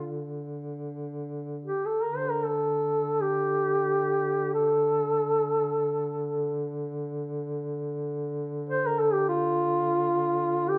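A wet recital hall reverb, lingering about 1.4 seconds, surrounds this short passage of Caucasian folk music, taken from a longer piece. It is a mournful, solemn lament in D minor, tuned to A4 = 439 Hz, and unfolds in free time. A mellow duduk carries the melody between F4 and C5 with vibrato, sounding distant and roomy in a folk style. Beneath it, a dark duduk holds a low D3 drone at a lower level, with a soft attack, scooped notes and its own vibrato. Both parts play from 0.0 to 10.8 seconds, forming a single section.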